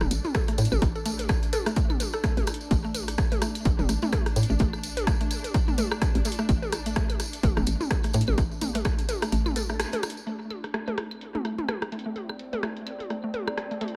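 An echo-heavy mix with light reverb and a faint mains hum frames this quirky, cool slice of minimal techno, cut from a longer piece at 127 BPM in A minor with a 57% swing on the sixteenths, resting on an Asus4 chord. An overdriven electronic kick sits up front, re-recorded in a large room, beside a punchy analog drum machine whose hi-hat and rim click carry overdrive, low-pass filtering and dub echo. A tape-warm click kit of claves, rim click and toms adds analog delay, while a jingly, band-limited tambourine trails dub echo. A hollow, bouncy FM bass pumps under sidechain, and a woody, mallet-like pluck riff with chorus and dub echo threads above it, all over a swarming, detuned drone tucked in the background. The kick drops out at 9.3 seconds ahead of a band accent at 9.8 seconds, and from 11.3 seconds a nostalgic, lo-fi pad with chorus and reverb warbles in softly behind the rest.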